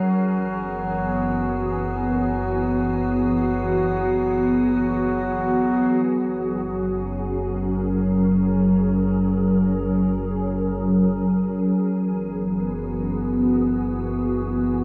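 A soft, organ-like pad opens this peaceful, luminous ambient fragment in free time, its pure, detuned tones sustained up front with ensemble chorus, over a round sine sub bass and a reedy, nasal harmonium drone that stops at 6.0 seconds. From 5.9 seconds a filter sweep moves across the pad as the harmony shifts from E over F# to F# and back at 11.8 seconds. The whole is bathed in a huge, wet reverb with small room ambience and the warbling pitch drift of worn cassette tape.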